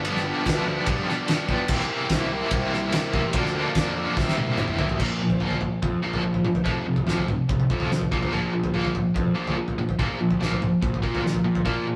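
A biting, double-tracked overdriven guitar with tremolo drives this moody, bittersweet indie rock excerpt at 144 BPM, its riff sitting up front beside a cloth-damped, thuddy drum kit with a fat snare and dark cymbals that plays a fill from 4.2 to 5.0 seconds. Beneath them, a growly fuzz bass sits in the background, while a shimmering, chorused pulse-width pad holds sustained chords until 5.0 seconds and a barely audible group handclap adds crisp accents. The rough rehearsal-room recording carries a moderate stone-room reverb, and the chords shift from G7 and C7 toward Bb5 and F5 in the second half.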